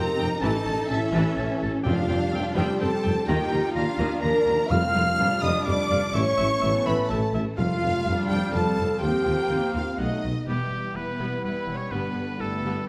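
Heroic adventure film score in a soaring, adventurous 3/4 at 125 BPM, this short cut from a longer piece sets a lush, vibrato-rich violin section melody over a very quiet second violin line, clear oboe, pure concert flute, dark distant clarinet, smooth background violas, mellow French horn and bright background trombone chords, a close-miked tuba, expressive cellos with portamento and woody double basses, while very quiet round timpani on soft mallets strike at 1.9, 4.7 and 7.6 seconds, all bathed in a wet recital hall reverb as the harmony moves from A and suspended chords through B7 into Em at 10.5 seconds.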